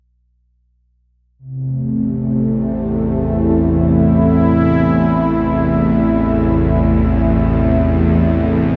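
Dark ambient drone in free time, vast and ominous: a resonant, evolving pad of sustained chords enters at 1.4 s on A minor with chorus and shimmer reverb, joined at 1.9 s by a tense, string-like bowed drone down low with ring modulation and vibrato, both sitting bright and up front in a huge, wet reverb with faint mains hum and the grain of cassette tape, cut from a longer piece.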